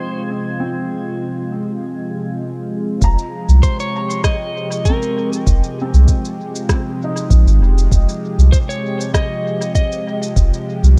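This meditative, deep ambient dub excerpt opens on a smooth, detuned analog pad with chorus, a muted upright piano with thin felt playing arpeggios through tape echo, and a slightly broken-up electric slide guitar carrying the melody with dub echo. A bubbling, resonant filter texture with chorus and its own reverb floats high above them for the first 3.0 seconds. At that point a round, up-front sub bass arrives, along with a soft electronic kick drum and an electronic shaker and rim click that trail dub echo, both drum parts re-recorded in a small room. The groove sits in 4/4 with a light swing on the sixteenths, while the harmony moves from Fm7 to Fm9. The production is dark and warm, with a digital ambience surrounding the parts.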